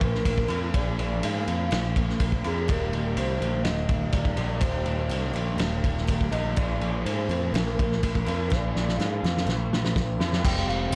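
A loose, up-front indie drum kit with a fat snare, punchy kick and gritty, rolled-off top drives this blissful, wistful shoegaze and dream-pop passage at 124 BPM, cut from a longer piece and featuring a drum fill from 8.5 to 10.5 seconds. A growling, overdriven picked bass sits forward beside it, while a crunchy overdriven guitar with analog chorus and a slightly broken-up, lo-fi guitar through a small old amp with reverse reverb play riffs in the background over Bb7 and Eb6 chords. Above them, a warbling, detuned lead carries the melody with chorus, vibrato and slapback echo, and a very quiet twelve-string acoustic adds shimmering, octave-doubled arpeggios, all set in a dark, warm studio reverb.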